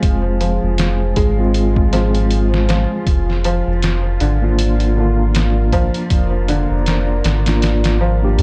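A round, deep analog bass sits up front in this cinematic, hypnotic trip hop excerpt at 79 BPM with a swung 16th feel, joined by a compressed, pitched-down, muffled sampler-style kit with a thumpy kick and a medium-tuned snare, a mellow tine electric piano with tremolo and tape echo, soft felt-muted upright piano arpeggios through digital delay, and a moody detuned pad and tense, string-like bowed drone lingering in the background, all moving from Fm to Bb/F in a dark production until the kick drops out at 7.6 seconds.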